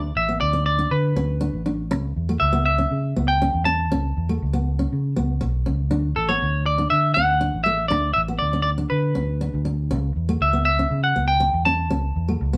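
A straight 4/4 pulse at 120 BPM drives this danceable, carefree highlife guitar band excerpt in D major, cut from a longer piece. A fingered electric bass sits up front with a dark, round, punchy amped tone, anchoring the low end throughout. From 0.2 seconds a semi-hollow electric guitar carries the melody, its bright, clean, picked sound also placed up front in the upper register. Underneath, a fingerpicked steel-string acoustic guitar supplies accompaniment, sitting lower in the mix with a warm auditorium body. The harmony moves between D5 and A/C#, and the band plays live together in one room with moderate studio reverb adding a natural sense of space.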